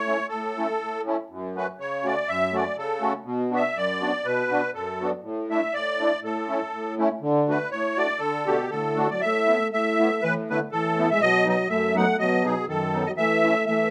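Jolly and bouncy, this alpine folk dance tune moves in a lilting two-beat metre with a gentle swing and a loose, rubato push and pull. A reedy musette accordion carries the melody up front, its shimmering tone sitting mid-forward in the mix. A second musette accordion plays the accompaniment in the lower register, with a vintage, band-limited character, and it too sits up front. At 8.5 s a clear euphonium joins with a light-vibrato second line in a classical style, punchy yet distant and roomy. The harmony wanders from A through F#m and Bm to D, and the second section from 9.2 s brings Asus2 and B before settling on A/E. A moderate small-room reverb gives the band a cozy sense of space, and the passage is cut from a longer piece, ending at 13.9 s.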